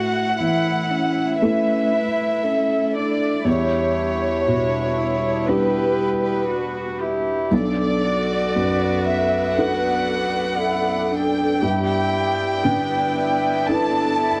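Fragile and melancholic, this rubato neoclassical piece in B minor drifts at 59 BPM, with an intimate chamber violin section carrying the melody over a pure, floating cello second line, a dark, woody viola, and a felt-muted upright piano whose action noise is audible, while a studio string section holds soft-edged chords in the background, the whole set in plate reverb and a small room and coloured by the warbling pitch drift of worn cassette tape.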